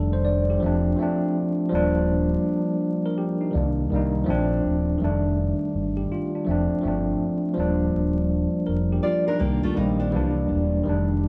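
A clean tine electric piano heard through its built-in speakers and a deep, full sine sub bass with octave open this nostalgic, mellow lo-fi hip hop passage cut from a longer piece, at 82 BPM with swung 16ths, the piano bathed in plate reverb as it moves through jazzy chords from F13 to Ebmaj9 and Cm9, while a warm, fingerpicked classical nylon-string guitar steps up front with analog delay and plate reverb from 9.0 to 10.3 seconds, all framed by a dry, gritty hardware sound with transformer saturation, vinyl crackle and small room ambience.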